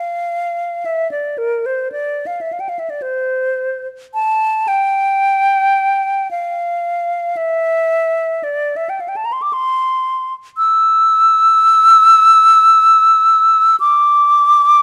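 A hollow concert flute opens the recording and carries it alone from 0.0 to 14.8 seconds, in a free, expressive classical vein. The mood is serene and lyrical, with a rubato feel that loosens the underlying 3/4 metre. The flute's tone is pure, shaded with vibrato, and its notes are tongued as the line moves between Bb4 and E6, with the instrument tuned to A4 = 438 Hz. Close, detailed microphones place the flute up front, while light reverb lends a little space around it. This short passage is cut from a longer piece.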